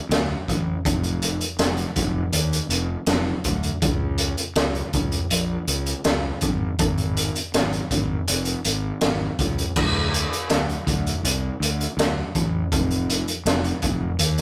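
Quiet-loud alternative rock in a straight 4/4, bittersweet and restless, cut from a longer piece and captured as a rough rehearsal-room recording with light reverb. A raw garage drum kit of kick, snare, hi-hat and crash sits up front with a boomy kick, high-tuned snare and a saturated, gritty, rolled-off top in a small room. Beside it, a fuzz fingered electric bass growls with overdriven grit from F1 to Eb2, both parts running together from 0.1 to 14.4 seconds.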